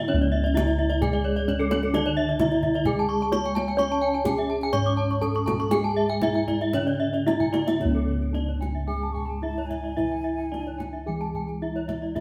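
Set in a wet stone-room reverb, this shimmering, brilliant cut from a longer Balinese gamelan piece layers a close, dry, ringing bronze metallophone melody over a soft, mellow metallophone accompaniment struck with padded mallets, two bright horn-mallet metallophones spinning airy arpeggios, round, beating bossed gongs up front on the bass, and a tight kendang played with hard hands that fills at 7.4 seconds, before a breathy, unsteady silver concert flute adds a faint second line with vibrato from 8.9 seconds.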